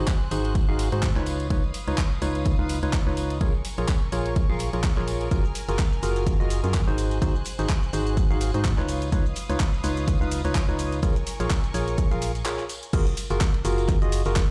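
A 126 BPM groove in 4/4 with a light swing on the 16ths drives this joyful, euphoric piano house passage in F# major, cut from a longer piece and cycling through G#7, C#9, A#m7 and F#maj9. A punchy analog kick sits up front beside a dark, hollow FM bass with a fast-attack, decaying organ-like tone, while an overdriven, layered garage kit adds crash, handclaps, hi-hat and shaker, and a small-room tambourine with maracas and group handclap rustles in the background. A percussive, ring-modulated organ stab carries the riff with chorus and delay, and a biting, distant string section holds sidechain-pumped chords until 12.9 s, just as a short break gives way to the drop, all heard dry on a big system in a bare stone room.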